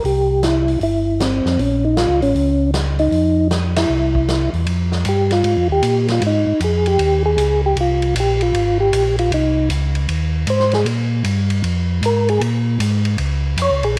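A swung 4/4 groove drives this bluesy, smoky soul jazz organ trio, cut from a longer piece. A swinging big-band drum kit keeps time on hi-hat, ride cymbal, snare and kick, sounding acoustic and natural in a big room, with dark cymbals, a medium-tuned snare and a punchy kick, and it sits further back than the organs. Up front, a round, clean tonewheel organ carries the bass line with audible key click through a slow rotary speaker. A second tonewheel organ plays the melody in a soft, flute-like voice with second-harmonic percussion, chorus vibrato and its own slow rotary speaker. The band hits an accent at 3.7 seconds, and at 4.7 seconds a tonewheel organ solo begins over Fm7 and Bbm7 harmony and runs to the end. A light studio reverb surrounds the trio.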